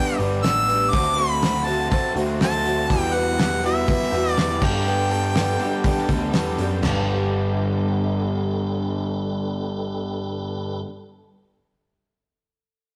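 A punchy, bright harmonica opens this short folk rock and heartland rock clip with a pop-style lead carrying a light vibrato, sitting up front over a boxy picked acoustic archtop guitar, a crunchy double-tracked overdriven electric guitar riff and a piping, scooped tonewheel organ holding sustained chords in the background through a slow rotary speaker. A picked electric bass and a dry 70s drum kit, with a fat snare, tight kick and rolled-off top across crash, hi-hat and toms, join almost at once, giving a steady, straight open-road drive. The chords move from G through D7 and Emadd9 to Gadd9 under the harmonica's tune. The harmonica drops out at 6.3 seconds and the drums stop at 6.9 seconds, leaving the guitars, organ and bass to carry the closing section. A stone room reverb and warm saturation give it the rough feel of a rehearsal-room take.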